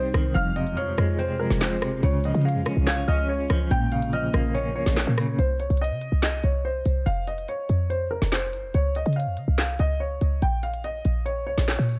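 A short, punchy 808-style bass sits up front in this menacing hip hop drill excerpt, its sine tone carrying a noise layer with a fast attack and a tight decay, all over a half-time feel. The electronic drill kit pairs a woody snare with crisp hi-hats, handclaps and rim clicks. A mellow baby grand piano carries the melody throughout, filtered and softened with tape echo. In the opening stretch, a bright, twangy clean electric guitar, picked and compressed, adds tremolo-laced accompaniment, while an airy, breathy pad of detuned sawtooth and triangle tones holds sustained chords with chorus in the background; both drop out at 5.4 s. A soft, pure FM synth bell warbles with a vintage flavour from 0.4 to 4.5 s, colored by chorus, phaser and tape echo. The production is dark and warm, with little reverb.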